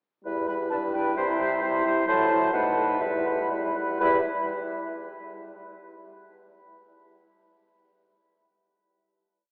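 In a quick, rubato 2/4 at 119-134 BPM, this brief, restless and dramatic classical-period movement for wind quintet in E minor features a pure, straight-toned concert flute with a crisp attack carrying the melody from 0.5 s, over an oboe second line placed up front. Clarinet and a distant, roomy French horn with light vibrato supply repeated notes and sustained chords, while a mellow bassoon with vibrato marks the bass on the beats; the harmony moves from Em through C and B7 back to Em before a final chord at 4.0 s. A wet cathedral reverb surrounds the ensemble, and the recording has an AM radio sound.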